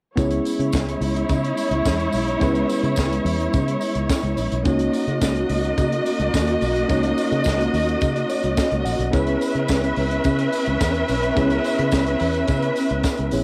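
Sultry and danceable, this excerpt from a longer disco piece moves at 107 BPM in a straight 4/4, set in C# dorian with tuning at A4 = 436 Hz and shifting from C#m7 to D#m7 at 4.7 seconds and back at 9.1. Up front, a bowed studio string section carries the second line with vibrato and portamento over a worn, slightly out-of-tune tine electric piano, both colored by cassette tape, while a round, foam-muted fingered bass and a tight funk kit with a high-tuned snare set the groove, and a jingly tambourine sits in the background. The electric piano steps out with a brief fill from 8.0 to 9.1 seconds, and the home cassette recording sits in a small room with moderate reverb.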